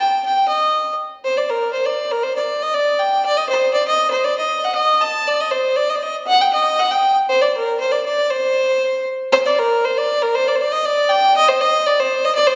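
In a straight two-four pulse, this fiery, virtuosic Balkan folk fragment from a longer piece features a single bowed fiddle playing solo throughout, its clear, nasal, earthy tone carrying light vibrato and a smooth top, set up front against the lingering reverb of a recital hall.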